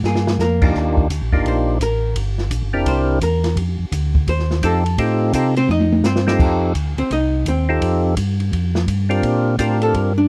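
A short drum fill opens this soulful, greasy soul jazz organ trio excerpt at a swinging 170 BPM in F mixolydian, as a mellow, round tonewheel organ lays down the bass line with light overdrive, chorus vibrato and a slow rotary speaker. A dark, clean archtop guitar comes in at 0.1 seconds with picked hollow-body lines, and from 0.6 seconds a fat, percussive second organ with third harmonic percussion, vibrato and slow rotary carries the melody. The acoustic drum kit sounds small-roomed with dusky cymbals and a boomy kick, adding another fill near 5.7 seconds, all captured in a dry, close 1970s-style studio sound.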